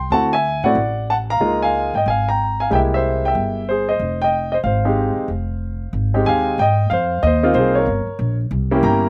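A smooth, vintage grand piano carries the melody up front over a woody pizzicato upright bass with steel strings in this late-night, swinging jazz piano trio excerpt in F minor at 186 BPM, moving through chords such as D9, Db69 and Fm9 before a turn at 6.6 seconds toward Ab69, Gdim and C7b9, all in a dry, open-air sound.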